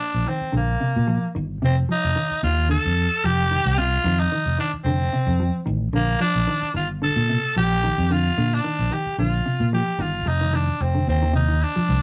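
Hypnotic and funky, this short afrobeat excerpt, cut from a longer piece, moves at 111 BPM in 4/4 with a light swing on the sixteenths, centered on F mixolydian. A breathy tenor saxophone carries the melody up front from the start, its raspy, gritty tone sung with vibrato in a punchy pop style between Bb3 and A4. A fingered electric bass enters at 0.1 seconds with a dark, round, amped sound in the low register, while a clean, mellow electric guitar joins at 0.3 seconds with arpeggios in a narrow band. The harmony shifts between Bb6 and an F7 chord, and a new section arrives at 10.3 seconds. The rough rehearsal-room recording carries a moderate studio reverb that gives the trio a close, live feel.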